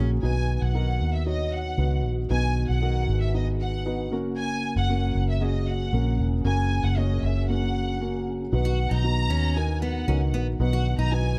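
A straight 4/4 pulse at 116 BPM drives this hopeful, anthemic piano-driven pop excerpt in B major, anchored by a round, punchy, foam-muted electric bass sitting up front beneath a soft, intimate felt-muted upright piano and a very quiet tonewheel organ holding sustained chords with chorus vibrato and key click. A distant, lush studio violin section carries the melody with bowed vibrato and a dark sul tasto tone. The harmony moves from B to F# and back to B, and a woody, full-bodied picked steel-string acoustic guitar riff, heard only briefly at the very start, returns at 8.7 seconds, all inside a small room ambience.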